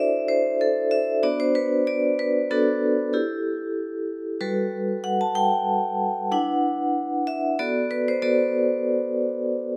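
Closely miked and detailed with light reverb, this short fragment from a longer contemporary classical piece for solo vibraphone unfolds in a hypnotic, reflective 5/4 at 94 BPM with a rubato feel, the bright, metallic, ringing vibraphone played with medium hard mallets and a medium motor vibrato sitting up front as it moves through Dadd9, Bm7, Emadd11, Gmaj9 and D69 harmonies over 9.8 seconds.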